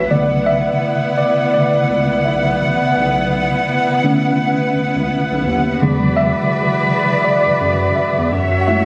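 R&B in a soulful, sultry mood, this short excerpt, cut from a longer piece, moves at an unhurried pace with a gentle swing on the sixteenths. A mellow tine electric piano carries the lead throughout its 8.8 seconds, clean and up front, heard as if through built-in speakers. Beneath it a chamber string section holds sustained chords, bowed sul tasto with vibrato and a soft attack that feels intimate and close. A round analog bass sits lower in the mix, deep and dark with a slightly nasal edge, its notes starting quickly and then sustaining. The harmony settles on Bm9 for most of the passage before shifting to E13 at 5.8 seconds and F#m7 at 8.3 seconds, and the sound carries a phone-in-the-room character with club reverb and compression.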